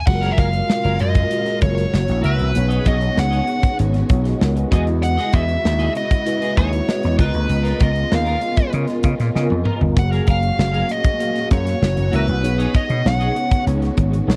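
A dry, close studio sound frames this breezy, urban slice of polished 1980s jazz-funk pop at 97 BPM in F# major, where a nasal, overdriven lead guitar with a parked wah carries the melody over punchy, round slap bass and an up-front drum kit with bright cymbals, while a mellow tine electric piano and a clean picked guitar riff, both touched with ensemble chorus, ride over background strings that add vibrato and portamento to sustained chords, with an electric piano fill at 8.7 seconds and a drum fill at 9.3 seconds leading back to the opening F#maj9 at 10.0 seconds.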